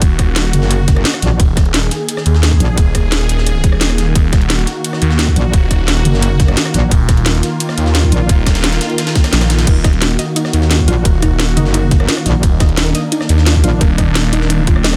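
A straight 4/4 groove drives this tense, mechanical slice of dark technical drum and bass, led by a tight, overdriven electronic kick up front, a layered drum and bass kit with cracking snare, metallic hats and rim clicks re-recorded in a small room, and a very quiet, gritty sampler-style breakbeat kit with a high-tuned snare and ride cymbal. A thick, swirling detuned saw bass with phaser holds the low end throughout, an aggressive FM wobble bass with chorus cuts in for short bursts beginning at 0.5 seconds, and a bright, evolving pad with chorus and sidechain pumping sustains chords above them. From 9.8 seconds a lo-fi, nasal pluck adds warbling arpeggios with tape echo in the background, all in a dry mix.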